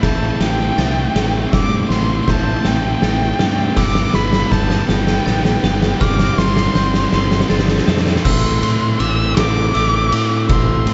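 An oversized, low-tuned drum kit sits up front with a fat snare, punchy kick and gritty saturation, driving a build-up and drum fill through the first 8.3 seconds of this cathartic, melancholic post-rock fragment in 6/8. A dark, nasal violin carries the melody with expressive vibrato and portamento, colored by slapback echo and analog delay, while a bell-like glockenspiel rings out arpeggios in the background with the same echoes. Beneath them, an overdriven, growling fingered bass, a raw garage guitar riff in the background, and a very quiet crunchy guitar riff and twangy twelve-string arpeggios (both stopping at 8.3 seconds) fill out a big arena sound bathed in lush hall reverb.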